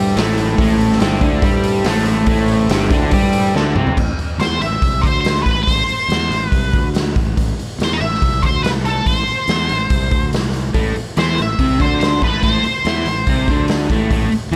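A heavy, smoky blues rock and southern rock fragment opens on a thick, key-clicking overdriven tonewheel organ turning slowly through a rotary speaker in the background, a crunchy double-tracked guitar riff soaked in spring reverb and a punchy fuzz fingered bass, soon joined by a raw, saturated garage drum kit with a gritty, rolled-off top ringing in a bright stone room, whose fill at 3.5 s closes the opening as the organ and riff drop away. Over the continuing bass and drums, a dark octave-fuzz lead guitar with wah and distortion carries the melody from 4.4 s to 13.7 s, and the riff guitar returns beneath it at 10.7 s.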